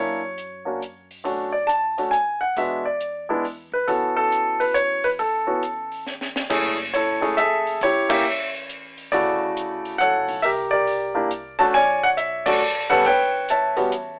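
A polished grand piano sits up front and carries the melody in this relaxed, sophisticated jazz trio piece, a swinging 3/4 at 138 BPM in A major cut from a longer piece. Beneath it, a pizzicato upright bass with steel strings adds a woody, growly tone from the background, while a compact cocktail drum kit keeps things dry with dark cymbals, a high-tuned snare and a punchy kick. The harmony moves through rich extended chords such as Bm9, E7 and A6 before a short drum fill ushers in a turn to F# minor at 6.5 seconds, where colors like F#m9, Dmaj9 and C7sus2 take over. The whole band hits shared accents at 8.0 and 12.4 seconds. The trio plays live together in one room with light reverb, and a telephone-like filter gives the sound a narrow, lo-fi cast that frames the piano's warm, present voice.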